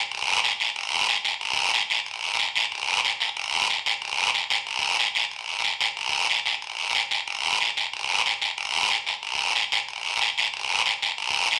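In a small room with a moderate studio reverb, a raspy, acoustic guiro sits close, dry and up front, carrying this driving, passionate Latin fragment from 0.1 seconds on, through a shift into a new section at 2.7 seconds, until the cut at 11.6 seconds.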